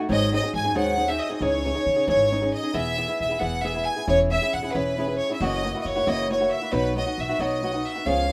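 Mexican folk mariachi in a festive, romantic 6/8 at 90 BPM in E major, cut from a longer piece, with a bright chamber violin section carrying the melody in a bowed ensemble with light vibrato up front, an up-front flamenco guitar fingerpicking the harmony from 0.0 seconds, and a woody, thumpy pizzicato upright bass underneath, all in a moderate studio reverb as the chords move from G#7 through C#madd9 into E at 2.7 seconds and on to F#7 and B.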